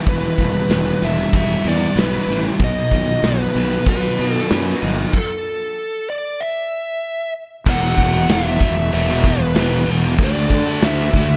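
A loose acoustic drum kit sits up front, its medium-tuned snare, tight kick, hi-hat and crash cymbal ringing in a small, pumping room. This brooding, dreamy fragment of shoegaze and dream pop rock moves at a straight 95 BPM in 4/4, in E minor. A growly, punchy fingered bass with fuzz and overdrive holds the low end beside the drums. In the background, a dark, thick fuzz guitar with distortion and ensemble chorus and a crunchy overdriven guitar washed in reverse reverb play riffs over Em7 and B. Above them, a bluesy lead guitar carries the melody with distortion and slapback echo. A stop arrives at 5.1 seconds. When the music resumes at 7.7 seconds over Emadd9 and Dsus4, a jingly, bright tambourine joins at 7.8 seconds, all within a dark, lightly reverberant studio production.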